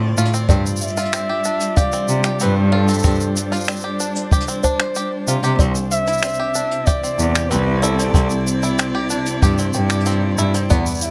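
A dark, close string quartet with expressive vibrato and portamento holds sustained chords from the opening moment, joined by a twangy, fingerpicked banjo playing delayed arpeggios and a rich, nasal bowed cello carrying the bass up front. This delicate, wistful folktronica moves at 94 BPM in a straight 4/4 over G7sus4 and Cadd9, with brushed drums adding finger snaps, hi-hat and shaker alongside a boomy acoustic kick in a small room, while a woody kalimba plays a bright second line in the background. At 0.8 seconds a breathy, whispered flugelhorn enters with an intimate, pop-style solo melody of scooped notes and soft attacks, its echoes and the light reverb lending the excerpt a hushed glow.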